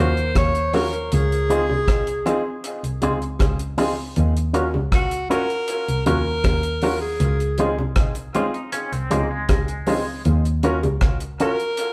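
Lovers rock reggae at 79 BPM in Eb dorian, this brief excerpt cut from a longer piece carries a longing, bittersweet mood as the chords move between Ebm7 and Dbmaj7. A breathy alto saxophone leads up front with a close-miked, whispered subtone and jazz-style vibrato, its intimate line touched by dub echo. Beneath it, a polished grand piano plays accompaniment with its own dub echo, while an electric guitar shaped by an envelope filter adds clean, compressed stabs, and a dark, bowed double bass floats low with a soft attack. A deep reggae drum kit enters at 0.2 seconds with a tight kick, hi-hat and rim click, dry and rolled-off at the top, joined by round, low-tuned, saturated bongos sitting in the background. Briefly, from 8.3 to 10.2 seconds, a twangy electric guitar slips in with tremolo-tinged arpeggios, all captured as a band playing live in one room with a wet studio reverb.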